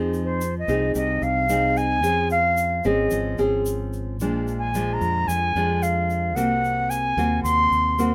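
A reedy, airy concert flute carries the wistful, intimate melody up front in this short bossa nova excerpt, over fingerpicked nylon-string guitar with audible finger squeak, a punchy fingered electric bass, a grainy tube shaker and a moderate studio ambience, moving through Fm7, Dbmaj7, Bb7 and Ab9/C.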